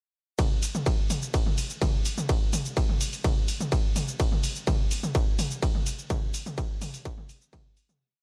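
A steady four-on-the-floor kick at 126 BPM in straight 4/4 drives this short techno piece, which is one continuous drop from 0.4 seconds onward. The electronic kick is layered and distorted, with a gritty punch that sits up front in the mix. Around it, a programmed techno drum kit supplies hats and a backbeat, adding shaker, ride, open hat and mid toms, with sidechain pumping on the toms, cymbals, percussion and hats. The hats have a warm tone, and the whole track feels dry and close. The mood is cinematic and hypnotic, and the piece fades out from 5.5 seconds to its end at 8.0 seconds.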